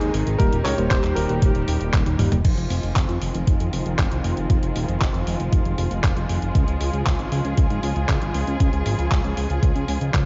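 A straight, danceable 4/4 italo disco groove with a nostalgic glow rides on a thumpy, sampler-style electronic kick from 0.4 s, a fat, detuned sawtooth analog bass up front with a filter sweep, and a tape-toned 8-bit drum machine whose gated-reverb crash, handclaps, hi-hat and toms break into a fill at 2.1 s, while muted, veiled strings hold dark bowed chords with vibrato throughout and a chorused vintage electric grand piano with digital delay and a clean tine electric piano in the background play only in the opening seconds, all in a dry mix dusted with vinyl crackle and a dulled top end.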